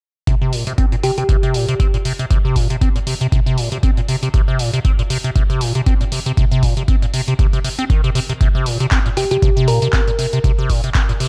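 From 0.3 s, a squelchy, resonant acid bass riff with phaser, tube saturation, sidechain pumping and tape echo sits up front beside an overdriven, deep electronic kick and a punchy analog drum machine's handclaps and hi-hat, both re-recorded in a small room, to set a raw, hypnotic, swung acid house groove, while a round, tine-like FM pluck with subtle chorus and tape echo surfaces briefly at 1.0 s and returns at 9.2 s within a dark digital ambience.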